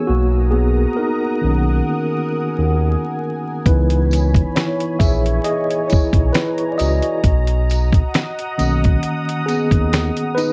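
Lo-fi hip hop with a nostalgic, hazy mood, this excerpt opens on a mellow, clean tine electric piano with a cassette-tape softness, carrying the lead over a lush, detuned unison pad with chorus and a smooth, dark synth bass with vibrato, moving from Bmaj7 to C#m7 and back. At 3.7 seconds a dusty, sampler-style drum kit enters up front with a thumpy kick, fat snare, hi-hat and finger snaps, all gritty and compressed, and at 4.1 seconds a jingly tambourine joins, distant in a large room. Light reverb and vinyl crackle add to the faded, lo-fi atmosphere.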